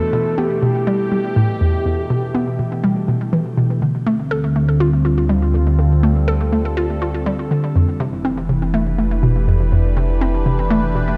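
Ambient, sequencer-driven space music in E minor moves at 122 BPM in a straight 4/4, its mood hypnotic and expansive in this short cut from a longer piece. A hollow, bouncy square-wave pluck carries the riff from 0.1 seconds, its detuned tone edged with a noise layer, chorus, delay and a cassette-tape grain, sitting up front alongside a swirling, evolving sawtooth pad that holds sustained chords through phaser and chorus. Over the opening Em, a mellow horn-like lead with soft attack and vibrato sings a brief melody between G4 and A4, bathed in shimmer reverb and delay, and falls silent at 3.3 seconds. At 3.8 seconds the harmony shifts to Dm and a round, deep analog bass enters with a nasal, dark triangle-and-sine tone, before the chords move to F at 7.8 seconds. A wet concert hall reverb wraps the whole texture in a spacious, lingering ambience.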